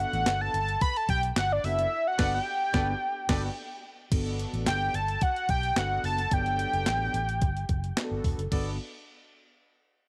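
Light reverb and digital ambience frame this feel-good, smooth stretch of early-eighties boogie funk in G major at 109 BPM, where a fat, nasal, detuned analog lead with ring modulation and vibrato sings the melody up front over a Gmaj9 bed of mellow, chorused sawtooth synth brass, a dark, foam-muted, punchy fingered electric bass, and a tape-tinged 12-bit drum machine with thumpy kick, handclaps, hi-hat, snare and crash, while a clear, smooth-topped horn section adds a second line at 2.2 seconds, inside a band accent from 1.9 to 4.1 seconds, and again at 8.5 seconds.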